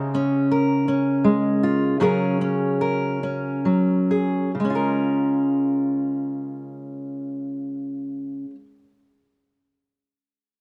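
Folk in a gentle waltz-time 3/4, this tender, nostalgic excerpt features a lone fingerpicked steel-string acoustic guitar, up front with audible finger squeak and a roomy auditorium tone, moving from Db6 to Gbadd9/Db and back while easing its pace through the opening 4.6 seconds, then stopping at 8.7 seconds as a moderate spring reverb lingers on.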